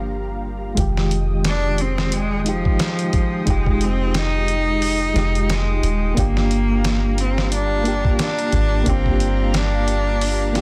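A swung 89 BPM trip hop groove in F dorian arrives at 0.8 s on a gritty, compressed sampler-style drum kit with a thumpy kick and fat snare in a small room, under a deep, round 808-style bass, as a clear, smooth bowed cello carries the hypnotic, brooding melody over a reedy tremolo electric piano, both coated in 12-bit sampler grit and tape echo, while a mellow string machine cello pad with ensemble chorus sustains Gm7 and Fm9 chords in the background of this dense, heavily limited mix.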